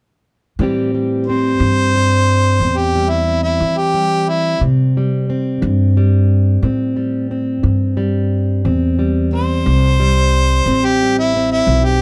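Smoky and soulful, this slow acoustic country blues excerpt in a straight 12/8 pairs a full-bodied, fingerpicked plugged-in steel-string acoustic guitar and a woody, growly pizzicato upright bass from 0.6 seconds over a lingering Am7, before an up-front harmonica enters at 1.3 seconds with a clear, jazz-styled solo of scooped notes, tongue slaps and light vibrato, all captured in a dark, dry production.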